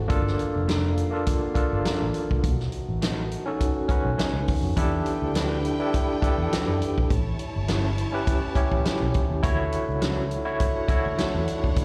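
Lush 1970s-style soul at 103 BPM with a light sixteenth-note swing in D major, romantic in mood, where a barky, lightly overdriven tine electric piano with medium tremolo sits up front beside a fat-snared, punchy vintage drum kit and a dark, round, foam-muted fingered bass, while a slightly broken-up, lo-fi electric guitar riff with slapback echo hovers in the background, a very quiet, mellow French horn section holds distant sustained chords, and a soft-attack, expressive violin section with vibrato joins at 4.8 seconds on a second line, all heard through a venue's PA in a recital-hall reverb.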